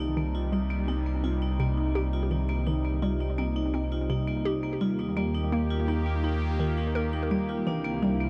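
A dark, warm production sits inside a huge ambient reverb with a long 8.2-second tail, framing this 8.3-second cut from a longer piece of ambient, sequencer-driven space music that feels cosmic and luminous. At 84 BPM in a straight 4/4, a detuned sawtooth pad with chorus holds evolving, bright sustained chords up front, its slow attack and long release opening through a filter swell. A hard-mallet vibraphone spins metallic, ringing arpeggios with medium motor vibrato and delay, while a hollow, bouncy square-wave pluck, detuned, with a noise layer, chorus and delay, plays a riff. Beneath them a round, deep analog bass blending square and sine waves sits up front on sustained low notes. The harmony moves from Cm to Eb at 4.8 seconds and to C7 at 7.7 seconds, with a filter sweep running across the synth arpeggio sound the whole way through.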